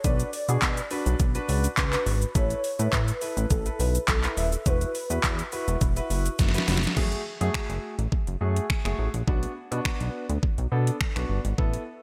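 Bright, 1980s-style digital production with light reverb frames this dance-pop excerpt, confident yet bittersweet in a straight 4/4. An overdriven, up-front pop kit of knocking kick, deep snare, metallic hi-hats, handclaps, finger snaps, shaker and crash, bathed in gated reverb, drives it alongside a glossy synth bass of pulse and sawtooth tones that pumps with the sidechain, while an intimate concert grand piano with audible action noise and long sustain also pumps under subtle chorus. A velvety, detuned sawtooth lead with vibrato, chorus and digital delay carries the melody until 5.5 s, and a drum fill at 6.4 s leads into a new section at 7.0 s.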